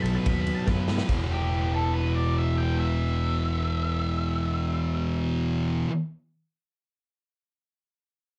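Garage rock with a swaggering, menacing edge drives along at 144 BPM in E minor, a short clip cut from a longer piece. A thick, double-tracked fuzz guitar sits up front with a picked, distorted riff low in its range, while a fingered electric bass adds a growly, amped foundation beneath it. An octave-fuzz lead guitar carries the melody with a dark, picked tone spanning G4 to B5, lasting until about 5.2 seconds. The raw garage drum kit plays only briefly, from 0.1 to 1.2 seconds, with punchy kick, medium-tuned snare, crash and ride in a bright stone room that pumps, its saturated sound roughened by vintage 12-bit sampler grit and a rolled-off top. A drum fill at 0.7 seconds leads from the opening B chord into a new section on E5 at 1.1 seconds, and the whole clip carries the character of cassette tape in a moderate studio ambience.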